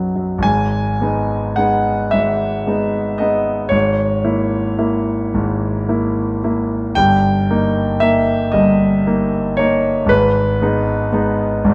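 A clear concert grand piano, up front with deep bass and long sustain across a range from G1 to G#5, plays this tender, dreamy romantic nocturne alone in G# minor at a slow 37 BPM in 6/8, its uneven rubato pulse moving from G#m through A#m7b5/G# and D#/G back to G#m by 10.1 seconds, captured by close, detailed microphones within the moderate reverb of a recital hall in a short passage cut from a longer piece.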